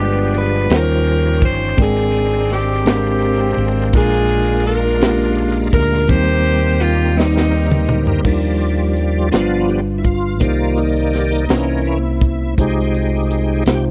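A slow gospel groove in 6/8 at 56 BPM, counted in dotted quarters, carries this uplifting, reverent passage in Eb major, cut from a longer piece. A clear, punchy saxophone section with vintage vibrato leads the melody until 8.2 seconds, over mellow tine electric piano, a round, envelope-filtered fingered bass and a tight, dry funk kit with bright cymbals that enters at 0.3 seconds. After a drum fill, the full, shouting tonewheel organ, with key click and a slow rotary speaker, takes a solo from 8.2 seconds in a close, 1970s-style small-room sound.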